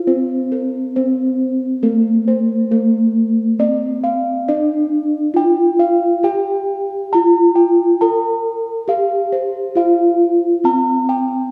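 A mellow, up-front bronze metallophone struck with padded disc mallets carries the melody in this serene, ceremonial gamelan fragment, its paired tuning yielding shimmering beats, while quieter bossed gongs add round, airy arpeggios from 0.1 seconds, within a wet concert hall reverb.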